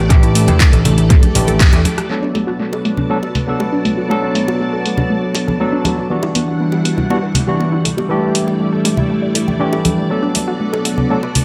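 Sensual and cosmic, this nu-disco excerpt at 120 BPM in B minor sets lush, slow-attack string-machine chords with ensemble chorus over a detuned sawtooth unison pluck arpeggio steeped in tape echo, a barky, lightly overdriven electric piano up front, and a tape-warm house kit of handclaps, hi-hat and rim click with ringing congas and bongos, while a punchy electronic kick drops out at 1.7 seconds and the amped slap bass at 1.8 seconds, a filter sweep runs on the arpeggio from 2.1 seconds, and the mix is echo-heavy with moderate plate reverb.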